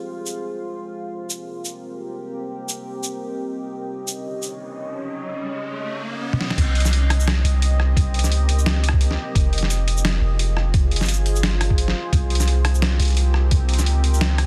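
A deep, moody pad opens this tense, heavy half-time drum and bass passage at 173 BPM in C phrygian, its detuned sawtooth chords carrying a sub octave, chorus and reverb, and pumping against the beat as they move through Fm, Cm7 and Dbsus2. Almost at once a gritty, pitched-down boom bap drum kit joins, with a medium-tuned snare that carries a little clipping, plus hi-hat, rim click, shaker, toms and crash cymbal, all with a tape-warm, sampler-style character and a swung sixteenth feel. An electronic riser enters at 4.5 seconds, and a drum fill leads into the drop at 6.6 seconds. There a long, mellow sine 808 bass arrives up front, deep and decaying, alongside a thumpy, compressed electronic kick. The heavily limited, dense mix sits in a digital ambience, and this section is cut from a longer piece.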